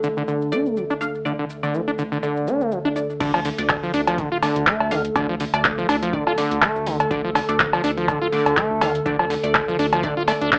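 Acid house with a driving, trippy pulse and a light swing, heard in a short cut from a longer piece with a lo-fi, cassette-and-AM-radio character and a moderate room. An up-front electro analog drum machine carries cowbell, crash cymbal, handclaps, metallic hats and shaker with a tape-warm tone, while an overdriven acid bass riff sits just as prominently, squelchy and resonant, with saturated filter plucks, cassette coloring, analog delay and sidechain pumping. Underneath, a warbling, nostalgic square-and-triangle pad holds dark sustained chords with chorus, built-in reverb and pumping, and a round, deep analog bass adds a detuned low foundation in the background. A filtered dub chord stab enters at 0.5 seconds, its muted, wave-folded plucks sounding bright, colored by phaser and analog delay. At 3.2 seconds the drop arrives as a deep electronic kick drum joins in the background, giving the groove extra weight through to the end.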